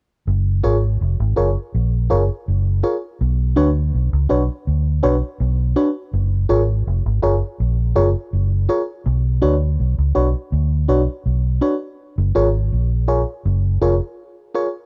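A straight 4/4 pulse at 82 BPM carries this tender, sweet slice of lovers rock reggae in F# major, tuned to A4 = 444 Hz. A vintage fingered electric bass enters at 0.3 seconds, its foam-muted tone dark, round and amped, sitting up front in the low register. From 0.6 seconds a mellow FM electric piano supplies the accompaniment, soft and full-bodied with a fast attack, a decaying tail and a faint noise layer, colored by chorus and phaser. The harmony alternates between F#maj9 and Bmadd9, settling back on F#maj9 as a new section opens at 12.0 seconds. The dry, close sound evokes a 1970s studio with little reverb, and this short passage is cut from a longer piece.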